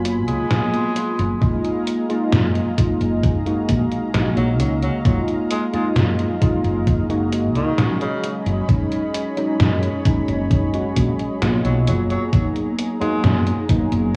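Faded and dreamy, this vaporwave excerpt drifts at 66 BPM in a straight 4/4, resting in F# major over a B5/F# opening that settles into F#maj13 and later B69/F#. A bright tine electric piano sits up front with the accompaniment, its clean tone coloured by analog chorus, analog delay and a gritty 12-bit sampler texture, while a lush unison pad holds thick, nasal sawtooth chords with a slow attack and long release beneath it. A woody fretless electric bass gives a round, hollow-body low end, and a detuned 8-bit digital drum machine places hi-hat and a medium-tuned snare up front, bathed in gated reverb. A thumpy electronic kick drum joins at 1.4 seconds. Floating over it all from 0.3 seconds, a clear tenor saxophone carries the melody in a low register with light vibrato and a smooth top, trailed by tape echo. The whole mix has a cassette-tape haze and a small-room reverb that lend it a worn, nostalgic sheen.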